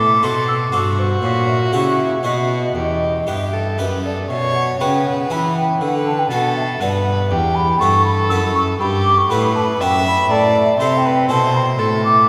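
A mellow, hollow baroque flute carries the melody over a nasal violin second line, a full Flemish-style harpsichord with two sets of strings and a reedy gut-strung cello in this solemn, flowing baroque-style sonata movement in 3/4 at 120 BPM, which starts in E minor, turns toward B minor at 4.3 seconds and sits in a wet church reverb, cut from a longer piece.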